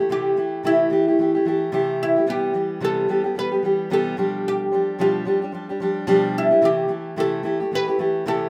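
A relaxed pop excerpt with an easy-going, carefree mood and a gently swung lilt, cut from a longer piece. A mellow, woody oud carries the melody, its plucked double strings sounding deep and fretless, while a full-bodied, up-front fingerpicked steel-string acoustic guitar supplies the accompaniment across chords moving from Am7/C through Cmaj7 and G7/B back to Am7/C. Both instruments play throughout the 8.5 seconds in a moderate studio reverb.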